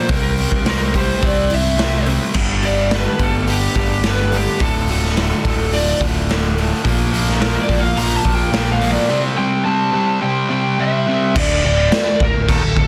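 Brooding and dark, this short cut of quiet-loud alternative rock puts a lo-fi, overdriven lead guitar through a small cranked amp with analog delay up top, soloing from 2.4 to 11.4 seconds over a raw garage drum kit with a punchy kick and gritty, saturated room sound, a growly picked electric bass, a crunchy overdriven guitar riff that enters at 2.3 seconds, an up-front fuzz guitar riff, and a full-bodied steel-string acoustic picking arpeggios in the background until 7.4 seconds, all set in light reverb under a dense, heavily limited master.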